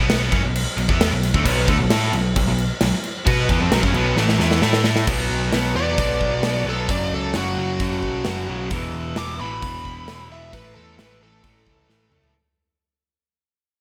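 Swaggering and energetic, this hard rock excerpt opens at once with a bright overdriven electric guitar riff over a growly, punchy picked electric bass and a big, up-front acoustic rock drum kit, featuring punchy kick, medium-tuned snare, hi-hat, toms and bright crash cymbals. A second overdriven riff joins at 1.4 seconds on a semi-hollow guitar, its warm hollow-body tone colored by analog chorus. After a drum fill, a smooth, singing lead guitar steps forward at 5.8 seconds with a solo ranging high up the neck, while the whole passage fades out from 5.1 seconds. The power-chord progression moves through B5, A5, back to B5, then F#5 and E5 before settling on A, with another drum fill closing the clip. A lush hall reverb and a touch of small-room ambience frame the crisp, 1980s-style digital production.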